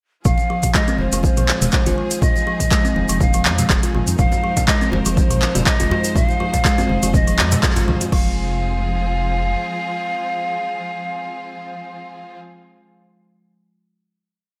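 Afro house at 122 BPM in F minor with a light swing, this short, complete piece feels spiritual and warm, opening straight into a drop over an Fm7 chord. A punchy, layered electronic kick drives four-on-the-floor beneath an overdriven afro-pop kit of metallic closed hats, claps, low toms and crash, set up front with gated reverb, while quiet, thin-skinned congas interlock and a grainy cabasa plays sixteenths in the background. A djembe joins at 4.3 seconds with a hard-handed cross rhythm, and a deep, rumbling detuned saw bass plays a syncopated riff that pumps with the sidechain alongside a woody, ringing kalimba step sequence treated with digital delay. Above them, breathy cane pan pipes carry hook phrases with chiff and vibrato through a delay, backed by a lush, biting symphonic string pad. After a band accent at 7.6 seconds, the drums and percussion stop, the bass lingers until 9.6 seconds, and the pipes and strings hold a final F minor chord until 12.4 seconds, all within a bright 1980s-style digital sound and light studio ambience.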